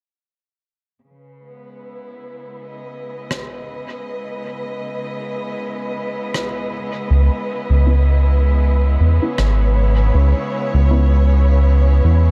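A lightly swung 79 BPM pulse in 4/4 carries this hazy, deep ambient dub fragment in C# minor, where a dark, smooth, bowed chamber string section fades in on a sustained C#m7 from 1.0 s, joined by an airy, breathy wind-like noise texture with its own reverb, a big-room acoustic rim click trailing dub echo from 3.3 s, an up-front, round analog bass from 7.1 s, and a muted, chorused filter-pluck chord stab with dub echo tucked into the background of an echo-heavy, otherwise dry mix.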